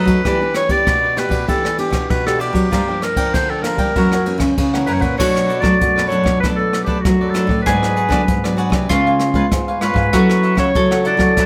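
Over a straight 4/4 samba-and-choro groove, this festive, playful excerpt puts a clear, vintage clarinet up front on the melody, with crisp picked cavaquinho, a deep, finger-squeaking fingerpicked nylon-string guitar in accompaniment and a second, fresh-strung nylon-string guitar on bass, jazz brushes with dark cymbals and a boomy kick, and a round, mellow mandolin entering at 5.2 s as a second line, all in a moderate studio reverb.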